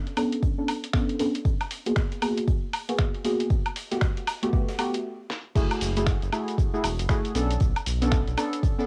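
A gritty, compressed sampler-style kit of cabasa, snaps, woodblock, hi-hat, fat snare and crash opens this moody, hypnotic deep house excerpt in F# minor at 117 BPM with a 16th-note swing, joined by a faint hall-sounding acoustic kit, an up-front, tape-saturated electronic kick, and soft, detuned chord stabs with chorus, tape echo, ring modulation and sidechain pumping that move through Bm9, G#m9 and Asus2 under a filter sweep. After a stop and a drum fill, the drop at 5.6 seconds brings in a round, dark analog bass pumping beneath the stabs as the chords shift to F#m9 and back to Bm9. The whole piece sits in a light room with a dusty cassette-tape character.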